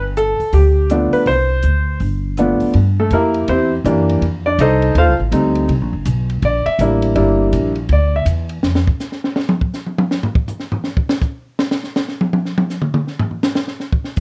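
A swung 4/4 at 163 BPM sets a playful, relaxed jazz piano trio in motion, centred on C mixolydian in this short cut from a longer piece. The upright bass opens at 0.0 s with a woody, growly pizzicato tone that sits up front, while a compact cocktail drum kit, dark and smooth with a punchy kick and high-tuned snare, brings hi-hat, ride cymbal, rim click, snare and toms. An intimate concert grand piano carries the melody, its audible action noise and deep bass giving it a natural presence, and it takes a solo over C7 and F7 changes that begins at 2.7 s. The piano drops out at 8.2 s, the drums launch into a solo at 8.6 s, and once the bass stops at 8.9 s the drums carry on alone through to the end. Light reverb and the warbly pitch drift of worn old cassette tape lend the whole recording a hazy, timeworn character.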